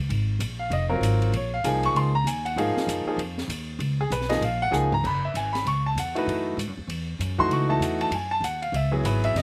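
A brisk swung 4/4 pulse drives this searching, spiritual modal jazz excerpt, where a woody, thumpy plucked upright bass sits up front beside a clear, natural grand piano voicing suspended chords, while an acoustic drum kit with dark cymbals, a high-tuned snare and a boomy kick plays a short fill at 4.7 seconds before the harmony shifts to a new modal center at 5.0 seconds, all in a dry, close outdoor sound.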